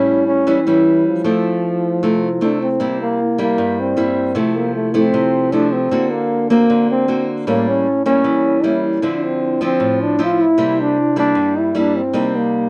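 Bossa nova at 154 BPM with a relaxed, breezy mood, heard in a short fragment of a longer piece where a jazz-style solo trombone carries the melody up front, its warm tone shaped by vibrato and scooped notes and set in plate reverb. A small, fingerpicked nylon-string guitar sits equally close in accompaniment, moving through chords such as A7, Fmaj7, Daug7 and Dm9 in a moderate studio room. The whole recording has the worn character of old cassette tape, with a warbling pitch drift.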